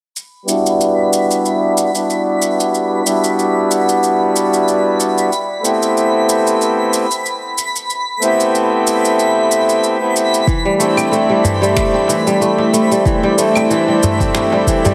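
Warm and earthy, this organic downtempo excerpt moves at 93 BPM in 4/4 with a light sixteenth-note swing, settled in E minor as the chords pass from Em7 to Am7 and then to C6 at 10.5 seconds. A reedy, breathing pedal harmonium sits up front from the start, pumping against the beat and run through delay while a filter sweep shapes it across the whole passage. Overdriven electronic shaker, claves and finger snaps, layered and re-recorded in a small room, carry the groove alongside a sparkling granular texture with an octave-up shimmer and its own reverb. At 10.5 seconds the arrangement fills out: a fingerpicked kora rings crisply up front through delay, a deep overdriven electronic kick pushes forward, and a detuned sawtooth pad with chorus warbles in the background. A dry, close clay-shelled darbuka joins at 11.0 seconds. The whole mix sits in a lush hall reverb yet carries a heavily compressed, radio-like sound.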